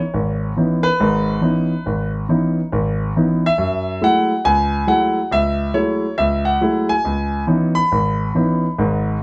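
A natural, up-front grand piano plays solo jazz with a cool, swinging feel at 139 BPM in C# minor, tuned to A4 = 444 Hz and ranging from G#1 to B5, moving from C#m9 to F#m9 at 3.6 seconds and back to C#m9 at 7.0 seconds in this 9.2-second cut from a longer piece, set in a moderate small-room reverb.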